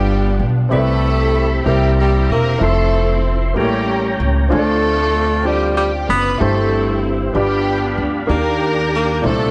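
A light, small-room reverb gives this short cut from a longer piece an intimate, close sound. It is a slow gospel number in 6/8 and C major, moving at 63 BPM in dotted quarters with a straight, jubilant and hopeful feel. A breathy tenor saxophone carries the melody in a jazz style, with subtone, vibrato and scooped notes, while a lush, bowed symphonic string section shares the line with a smooth, focused top. A clear, polished grand piano supplies the accompaniment, and a woody, pizzicato upright bass sits up front underneath. From 0.7 s a percussive tonewheel organ adds sustained chords with key click, chorus vibrato and a slow rotary speaker. The harmony moves from G7 through Cmaj7, C7, Fmaj7, A7b9 and Dm7, then passes through C/G and back to G7 before landing on an Ebmaj7 at 8.3 s.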